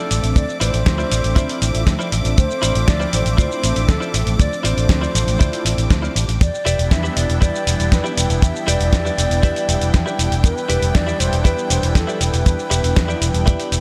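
A breathy, hollow flute carries the melody from the first moment, roughened by vintage sampler grit and trailing a diffuse delay, over a smooth, detuned analog pad with chorus and a twangy, clean electric guitar riff. This groovy, cosmic nu-disco excerpt is built on a tight, dry kick up front, a gritty sampler-style kit with fat snare, hi-hat and shaker, and a bright, envelope-filtered fingered bass with sidechain pumping, while a clear string section holds high sustained chords in the background. The whole mix is soaked in a lush hall reverb, drifting dreamily from Dm9 to Em7 at 6.4 seconds.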